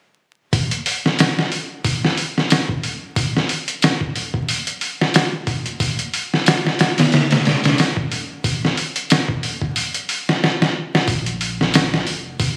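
Heard through a phone in a reverberant echo-chamber room, with vinyl crackle and compression, this brooding, cinematic trip hop excerpt has a swung feel. A gritty, pitched-down sampler-style drum kit sits up front from 0.5 seconds, its thumpy kick, medium-tuned snare and hi-hat carrying a tape-warm, compressed character before a drum fill at 10.4 seconds. At 11.1 seconds a deep, round sine sub bass enters in the background, mellow and sustained.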